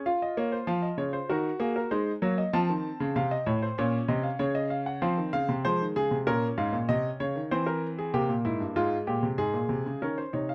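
A straight 4/4 pulse at 96 BPM drives this serious, baroque-style three-part fugue in Bb minor, a short cut from a longer classical piece. A solo concert grand piano plays throughout, up front and natural, its worn yet clear tone reaching from a deep bass on G2 up to A5. The harmony moves from Bbm through Ebm, F7 and Fm before arriving at an open Eb7 at 10.0 seconds, all captured by close, detailed microphones in light reverb.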